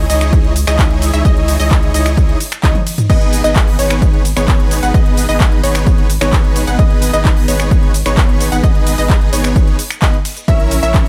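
A straight 4/4 pulse from a punchy, up-front electronic kick and a big-room dance kit of crisp hats, handclaps, finger snaps, cabasa, ride, crash and toms, with a drum fill at 2.6 seconds, drives this anthemic, emotional festival progressive house excerpt, where a huge, bright, detuned supersaw riff, a lush, decaying unison pluck playing arpeggios and a deep, saturated sine sub bass all pump with sidechain compression, the supersaw and pluck trailing digital delay, over chords moving from C#madd9 to G#m and then A#dim in a digital ambience.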